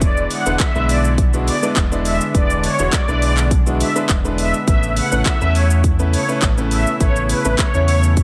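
Dance-pop with a summery, upbeat mood, this short excerpt moves at 103 BPM in a straight 4/4, set in A major and shifting from E7 to Aadd9 at 4.7 seconds. A punchy, layered electronic house kit sits up front with kick drum, handclaps, shaker and warm hats, while a deep, full sine sub bass with an octave above holds sustained notes from E1 to E2 with a fast attack. A clear concert grand piano with a smooth, vintage character and rich low end plays accompaniment, and a shimmering, retro pulse-width pad, detuned and chorused with ring modulation and a sub octave, sustains chords in the background. On top, a bright, evolving supersaw lead carries the melody between B4 and F#5, its detuned unison sawtooths opening through a filter swell with a slow attack and trailing tape echo. The synths, piano and bass all pump with sidechain, a hollow, close and dry group handclap is barely audible from 0.6 to 7.7 seconds, and a digital ambience surrounds the mix.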